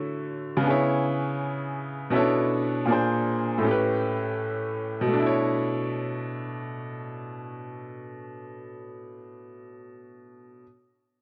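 A brilliant, woody upright piano sits up front through the whole clip, voicing lush jazz-tinged chords such as Dmaj9, C#m7 and Bm11 over a gently swung hip hop groove. The piano passes through cassette tape coloring and a low-pass filter, while a moderate spring reverb lends a hazy, nostalgic air. The harmony shifts into a new section at 5.1 seconds, returning to Bm11, and the passage is cut from a longer piece.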